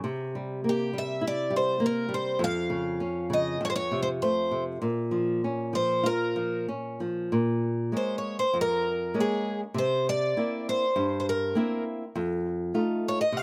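An up-front, lightly reverberant outdoor sound frames this passionate, longing fado-style ballad in Bb minor at 100 BPM with a rubato feel, where a fingerpicked flamenco guitar with slapback echo carries the accompaniment from the start through chords like C7, Bbm and F7, and a shimmering, octave-doubled twelve-string acoustic guitar, finger squeaks audible, enters at 0.7 seconds with the melody in a section cut from a longer piece.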